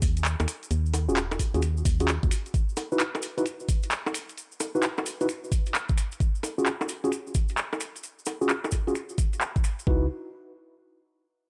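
A dry, gritty hardware recording with little reverb opens this soulful, late-night slice of two-step UK garage, moving at 131 BPM in 4/4 with a 65% swing on the sixteenths. A knocking electronic kick sits up front from the start, joined by a layered garage kit of bongos, finger snaps, handclaps and metallic hi-hats, all low-pass filtered and re-recorded in a small room, while a grainy cabasa ticks quietly beneath. A hollow, organ-like FM bass with a fast attack and dark decay plays between D#1 and D#2 for the opening 2.3 seconds, then returns briefly at 9.9 seconds. From 1.1 seconds a mellow tine electric piano adds stabs between C#4 and B4, roughened by vintage 12-bit sampler grit and tape echo, and a filter sweep runs across it through to 9.9 seconds. The harmony moves from D#m at 2.5 seconds to C#add11 at 6.2 seconds, settling on C#m11 as a new section begins at 9.9 seconds in this fragment of a longer piece.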